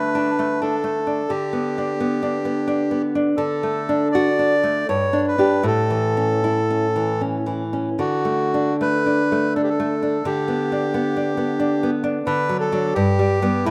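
A reedy bandoneon melody and a bright, fingerpicked classical nylon-string guitar accompaniment begin together, both up front, in this warm, lyrical romantic duo, which moves in a rubato three-beat lilt through a lush hall reverb on a rough home demo mix cut from a longer piece.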